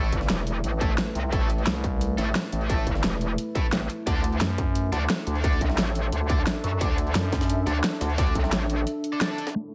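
At 175 BPM in a straight 4/4, a distorted, tape-warm electronic kick and an up-front dubstep kit with a huge snare and bright, low-passed hats drive this tense, futuristic excerpt of dark technical drum and bass, while a very quiet, gritty, pitched-up jungle sampler-style kit sits beneath. An aggressive, metallic wobble bass with chorus and overdrive anchors the Am to D progression, short bursts of thick, growling FM bass cut in at 1.7, 4.4 and 7.2 seconds, and a deep, moody pad with sidechain pumping holds sustained chords under stabs from a double-tracked, overdriven electric guitar roughened by 12-bit sampler grit and digital delay. After a break from 8.9 seconds, a mellow, warbly lo-fi pluck and a faint, breathy pad with a nasal tinge surface at 9.6 seconds, all under light digital ambience with a dark, filtered top end.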